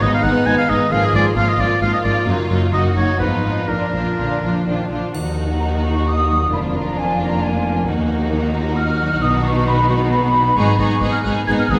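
Classical and dramatic, this restless, fast romantic orchestral fragment in Eb minor moves at 132 BPM in a rubato 3/4, with a smooth, lush violin section carrying the melody over a second violin line, focused violas, a ringing background harp, and rich cellos and distant double basses, while a bright, up-front solo oboe sings above until 4.7 s, a brief triangle touch arrives at 5.1 s, and an airy flute group takes over the upper line from 5.6 s, all bathed in a wet scoring-stage reverb.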